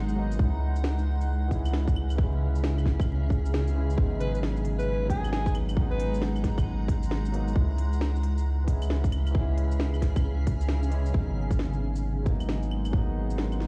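A swung 16th-note groove at 134 BPM in 4/4 drives this ghostly, melancholic future garage passage in G# minor, cut from a longer piece. A tight, layered electronic kick sits up front alongside an overdriven organic electronic kit of woody snare, crisp hats, claves and shaker in a small room, while a deep, round sine sub bass holds the low end. A barky tine electric piano, lightly overdriven through a combo amp with subtle chorus and tape echo, and a cloudy, evolving granular pad with 12-bit sampler grit both pump against the kick as the chords move between C#m and G#m7. From 4.2 to 6.2 seconds a breathy, whispered alto saxophone with vibrato drifts in from a distance, carried by tape echo. The band hits an accent at 10.7 seconds before a new section begins at 11.1 seconds. The whole mix sounds as if played on a big sound system in a bare stone room, dusted with vinyl crackle.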